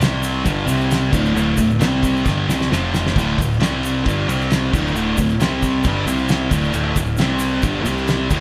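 A short cut from a longer garage rock piece, caught as a band playing live together in a stone room whose wet reverb hangs about a second on the sound. Up front, a thick, double-tracked fuzz guitar hammers out a picked riff of power chords, cycling mostly through C5, G5 and D5 with a brief Gsus4 and F5 along the way. Beneath it, a growling fingered electric bass adds overdriven, bright grit low in the mix. The cloth-damped acoustic kit sounds thuddy, with a fat snare, tight kick and dark, rolled-off crash and ride cymbals, and it breaks into a fill from 2.3 to 3.2 seconds. A grainy egg shaker rattles in the background throughout, keeping the straight 4/4 groove swaggering and rowdy.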